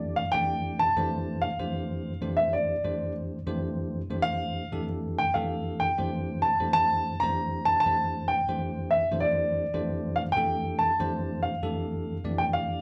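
A grand piano and a tine electric piano sound together from the very start, resting on an Fmaj13 chord in F major at 96 BPM in a straight 4/4 jazz feel. The grand piano carries the melody high in its register, between D5 and Bb5, with a warm tone and short sustain that sits up front. Beneath it, the electric piano plays the accompaniment from F2 up to D5, its bell-like voice bright, clean and direct, also placed close to the listener. The mood is soaring yet funky, and the two keyboards share a large studio with a wet reverb, as if the band were playing live in one room. This 12.8-second passage is cut from a longer piece, and both parts play through its whole length.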